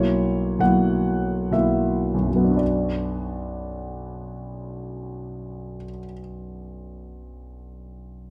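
Passionate and stormy, this short passage from a romantic character piece for solo piano moves in a rubato 3/4 at 55-72 BPM in B minor, with the instrument tuned to A4 = 441 Hz. A warm concert grand, heard up front and intimate with deep bass and audible action noise, slows over an F#7/B harmony in the opening 2.6 seconds before settling onto B minor for the second section, which runs to 8.3 seconds. Close, detailed microphones capture the natural tone of the piano within a moderate recital hall reverb.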